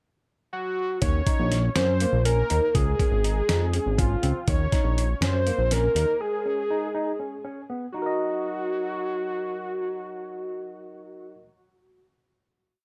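A fat analog lead carries this complete progressive instrumental, its nasal, detuned sawtooth tone reinforced by a sub octave and shaded with vibrato and a digital delay as it spins a motif-based melody in sentence-like phrases from 0.5 s. The mood is driving and tense, set in an uneven 7/8 with a straight feel. Up front, a thick, wave-folded analog bass with a filter sweep plays a syncopated riff alongside a gritty, compressed sampler-style drum kit, re-recorded in a small room, with a thumpy kick, snare and hi-hat; both stop at 6.1 s. A bright, barky tine electric piano runs an arpeggiated ostinato through a combo amp with lush chorus, sitting lower in the mix. After a brief chord cycle, the piece settles at 7.9 s on a held final minor chord, framed by light reverb.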